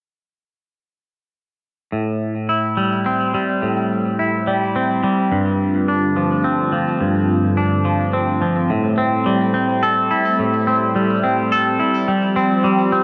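Cathartic and cinematic, this rock excerpt moves at 106 BPM in 3/4 with a straight feel in A minor, tuned to A4 = 436 Hz. A bright, twangy electric guitar sits up front from 1.9 seconds, playing clean picked arpeggios through phaser and tape echo. At 5.3 seconds a thick, warbling, detuned sawtooth pad joins in the background with slow-attack chorused chords as the harmony shifts from Am7 to G9sus4, all within a dark, warm mix bathed in moderate plate reverb.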